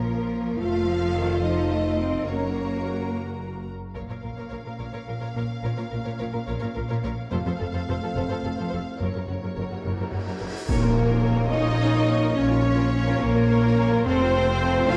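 Up-front double basses anchor this dramatic, brooding orchestral film-score passage in Bb harmonic minor at a slow 71 BPM in 6/8, beneath two lush, vibrato-laden violin lines, background violas, distant rich cellos and mellow French horn chords, with bright cymbals and tam-tam arriving at 7.3 seconds and a huge cymbal swell from 10.4 seconds cresting into an impact at 10.7 seconds that brings in clear, very quiet trombones, dark woodwinds and background trumpet stabs within a moderate scoring-stage reverb.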